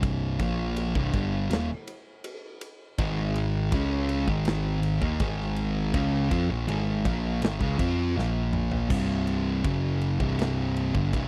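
Stoner and doom metal with an ominous, sludgy weight, where an up-front fuzz guitar riff, a growly overdriven picked bass and a punchy, dark big rock drum kit open together, a thick fuzz guitar joins in the background at 3.0 seconds, and a drum fill at 8.2 seconds leads into a new section, all in a dry, close 1970s-style small-room sound that is cut from a longer piece.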